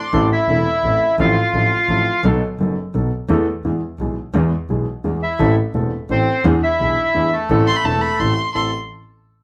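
A rubato 3/4 pulse at 171 BPM gives this tense, dramatic tango fragment in A harmonic minor an elastic, restless sway. A reedy, vintage-sounding bandoneon carries the melody up front, its band-limited tone bathed in plate reverb, stating a phrase at the start and returning at 5.2 seconds. A concert grand piano with deep bass and short sustain provides the accompaniment, while a focused, bowed double bass with vibrato anchors the low end beneath it. A smooth, expressive violin with vibrato and portamento adds a brief second line at the opening, then comes back at 7.7 seconds to close out the passage. The harmony moves from Am through F/A, B7, Esus4 and E, returns to Am, then passes through E7 and back to Am, all heard in a studio room from a little further back.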